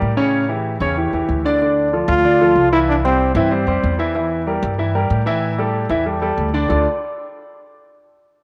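A warm, polished baby grand piano and a woody, thumpy pizzicato upright bass open this fiery, danceable salsa excerpt at 188 BPM in D minor, with a bright, punchy trombone solo carrying vibrato up front from 2.1 to 4.0 seconds, all set in a wet spring reverb over chords moving from Dm through C and Edim.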